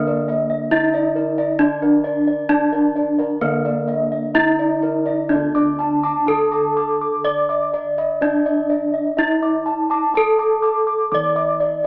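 A bronze metallophone carries the melody up front from the first moment, bright and ringing under a horn mallet, its paired tuning producing shimmering beats, while a second metallophone struck with a wooden mallet and a set of bossed gongs spin arpeggios above it, the former boxy and warm, the latter round, beating, vintage and band-limited. Low bossed gongs hold the bass with a round, beating tone that sounds bright, all in a hypnotic, shimmering Javanese gamelan groove at 62-70 BPM in 4/4, tuned to A4 = 442 Hz. The ensemble plays live in one room with moderate studio reverb and an AM radio colour, moving from one section into another at 5.3 seconds in this short cut from a longer piece.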